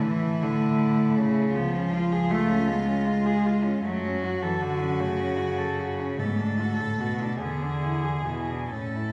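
From the first moment, four bowed cellos sound together in a serene, lyrical classical passage in 6/8, moving at roughly 43-54 beats per minute in dotted quarters with a flexible, rubato feel. The melody sits high in the cello's range, played sul tasto with light vibrato, a soft attack and an airy bow, and a second cello carries its own intimate, close line just beneath it in the same gentle manner. The accompanying cello sits up front and is the loudest of the group, its tone pure and floating with a smooth top, while a dark, woody cello holds the bass with vibrato. The harmony moves from A5 through C#, F#m and Bm7/D to E7 at 7.4 seconds, and this excerpt from a longer piece closes at 9.1 seconds. A wet recital-hall reverb of about 1.7 seconds surrounds the ensemble, which is heard from further back in the room.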